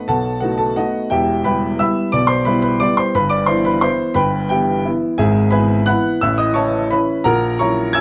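A clear, woody upright piano carries this graceful, sparkling classical waltz alone from 0.0 to 8.0 seconds, sitting up front with a polished, present tone and long sustain. Set in E minor at 175 BPM in 3/4, the playing leans into rubato, so the beats fall unevenly and the lilt of the dance breathes freely. The harmony moves from B7 to Em at 1.1 seconds, then through Em/G, E/G#, A and F#7/A#, ending on that chord as if the phrase is still reaching onward, fitting for a brief passage cut from a longer piece. The piano spans a broad range from E1 up to G#6. A moderate large-studio reverb lends the dark, warm production a sense of space around the instrument.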